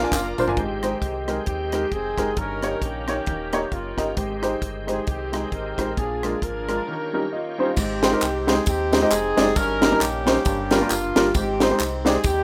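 A rough home demo mix in a wet studio room carries this short, jubilant slice of uptempo swung gospel, led by a mellow, lightly vibrato horn section on the melody over a woody, slightly detuned upright piano and a deep, sine-like sub bass with octave. A tight, dry funk drum kit with a high-tuned snare sits up front, a dark bowed string section is heard only in the opening 0.6 seconds, and a shouting, lightly overdriven tonewheel organ with slow rotary speaker holds chords until 7.8 seconds. At that point, after a short piano fill, close group handclaps and tambourine return for the uplifting final stretch.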